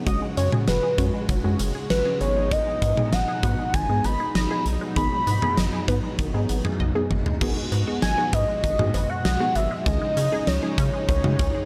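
Synth-pop with a driving, melancholic mood, carried by a velvety, mellow synth lead with vibrato over a rubbery, hollow square bass and a huge arena drum kit with a punchy kick, fat snare, bright cymbals, cowbell and toms. Beneath them sit a brassy, evolving analog pad, a warbling, lo-fi dusty pluck with chorus, and a squelchy blip pluck playing arpeggios through phaser and tape echo in the background, in a dry mix with little reverb. A drum fill at 6.8 seconds leads into a new section at 7.4 seconds of this excerpt from a longer piece.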